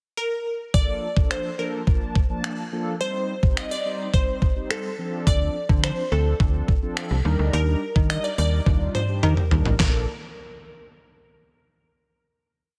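A dense, heavily limited modern master with light reverb carries this carefree, upbeat dance-pop piece in Bb major at 106 BPM, where a glassy, crystalline wavetable pluck with chorus and dub echo opens a motif-based melody in the pickup bar at 0.2 s. At 0.7 s a detuned 8-bit drum machine sets a syncopated pop beat with a thumpy kick, a fat, softly clipped snare, snaps, claps and toms. Mellow, round synth brass plays sidechain-pumped syncopated chords through Bbmaj7, Cm, Dm7 and Ebmaj7, and a snappy, metallic FM bass joins at 5.3 s before a drum fill leads into the final Bbmaj7 chord.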